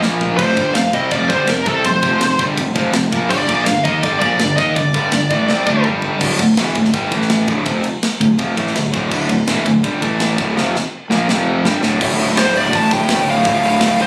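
Heavy metal at 165 BPM in D minor, aggressive and epic, cut from a longer piece. A sludgy, overdriven rhythm guitar, picked and double-tracked, sits up front with a riff spanning D2 to Eb4, while a round, punchy fingered bass with fuzz and overdrive runs beneath it throughout. A tight acoustic drum kit with bright cymbals, a medium-tuned snare and a tight kick drives the straight 4/4 feel, opening with a fill and adding further fills around 5.5 and 10.6 seconds. A high-gain, distorted lead guitar, also picked and up front, carries the melody between A4 and A5, entering at 0.4 seconds, dropping out at 5.8 and returning at 12.4 seconds. The harmony moves through power chords on F, G, D and A against D minor. Light reverb and studio ambience frame the recording, captured on a phone in the room.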